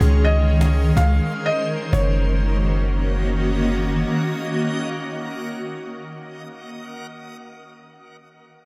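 Atmospheric cloud-rap hip hop in free time and Gb lydian, this short, dreamy excerpt from a longer piece floats on a blurred, detuned granular cloud pad and a reversed, bright swelling texture, both steeped in built-in reverb and lasting the full 6.8 seconds. A deep, boomy 808-style bass sits up front until 4.0 seconds, while a snappy acoustic cajon with snares plays only through the first 2.0 seconds, in a small room ambience. A soft, felt-muted upright piano carries an intimate melody with delay from 0.2 to 3.6 seconds over chords moving from Dbsus2 to Gb6.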